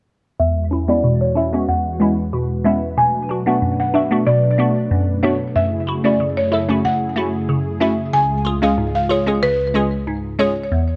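From 0.4 s, a buzzing, woody marimba carries the melody with a tape echo, over a glassy, crystalline wavetable pluck accompaniment and a smooth, mellow analog pad holding sustained chords, all moving through E6, Bm7, F#m7 and C# in this sultry, bouncy dancehall excerpt at 93 BPM. The up-front pluck brings a bright, nasal digital edge and a filter sweep, while the pad's soft attack and long release sit gently beneath. A moderate echo chamber reverb frames a dark, warm production, with the marimba ending at 10.5 s and the pluck lingering until 11.0 s.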